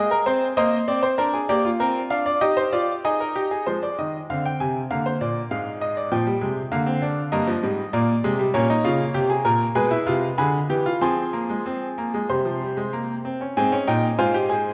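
A straight 4/4 pulse at 97 BPM drives this solemn, baroque-style four-part fugue for solo baby grand piano, which plays throughout its 14.7 seconds in a brilliant, natural tone set up front in a moderate concert hall reverb. The harmony moves from Abadd9 through Bb7 and Eb to F minor and diminished colours such as Ddim and Bdim7, settling into F minor from 8.5 seconds and closing on Fm/Ab. The passage is cut from a longer piece.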